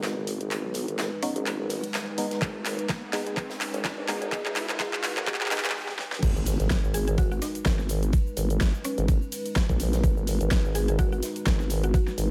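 This bouncy, swaggering bass house passage in G# minor at 126 BPM, with a light swing and tuned to A4 = 436 Hz, opens on a build-up where a woody, round FM synth pluck carries the melody through chorus, tape grit and delay over a deep, moody detuned analog pad, a nasal, resonant vowel-sweep wobble bass up front, a huge-snared overdriven big-room dance kit with claps, shaker and crash, a very quiet acoustic rock kit, a background riser and a hollow organ-like stab with a filter sweep; a knocking, overdriven electronic kick joins at 2.4 seconds, and after a brief break the drop lands at 6.2 seconds with an impact, all under light reverb.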